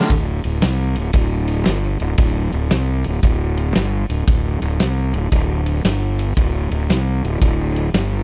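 A fuzz-drenched, fingered electric bass anchors this heavy, gritty clip, its overdriven tone sitting up front as it moves between D1 and C2 from 0.1 seconds onward. The style blends blues rock power trio with southern rock, set at 115 BPM in 4/4 with a swung eighth-note feel and tuned slightly sharp to A4 = 441 Hz. A huge acoustic arena drum kit starts things at 0.0 seconds and also sits up front alongside the bass. Its punchy kick, fat snare and ride cymbal carry a natural, big-room character. The production is dry and close in a 1970s studio style, with little reverb, which keeps the bass's amped grit raw and immediate. The passage is cut from a longer piece, and the two parts play together until the drums stop at 8.1 seconds.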